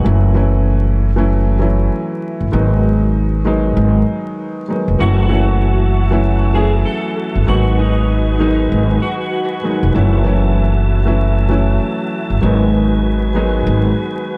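Gritty and dark, this hip hop excerpt moves at 97 BPM in 4/4 with a swung sixteenth-note feel, sitting in F# dorian and alternating between F#m7 and G#m7. A woody, pizzicato upright bass with steel strings sits up front from the start, alongside a mellow, worn grand piano whose intimate sound carries audible action noise. At 5.0 seconds a slightly broken-up electric guitar takes the melody with fingered, shadowy tone, coloured by ensemble chorus and tape echo, until it drops out at 9.5 seconds. Also entering at 5.0 seconds, a smooth, clean tonewheel organ holds sustained chords with chorus vibrato, key click and a stopped rotary speaker. Light reverb and small room ambience frame the parts, while vinyl crackle runs through the whole passage.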